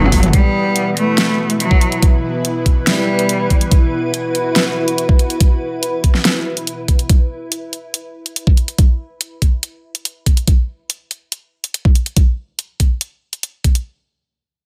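A short drum fill on overdriven hi-hat, snare and toms opens this heavy, menacing wobble dubstep excerpt, moving at 142 BPM in a half-time 4/4 feel in E harmonic minor. A knocking, layered electronic kick sits loudest and up front beside the huge snare of the kit, both driven hard with overdrive. Over an E5 chord, a rich, focused bowed cello carries the melody with vibrato and a touch of delay until 3.6 seconds. Underneath, a lush, thick unison pad of detuned sawtooth and square waves holds bright sustained chords through chorus and phaser, while a cloudy, blurred granular pad drifts higher with its own built-in reverb, both pumping against the kick. The pads fall away at 7.1 seconds, leaving only the drums to pound on in a dry, close sound.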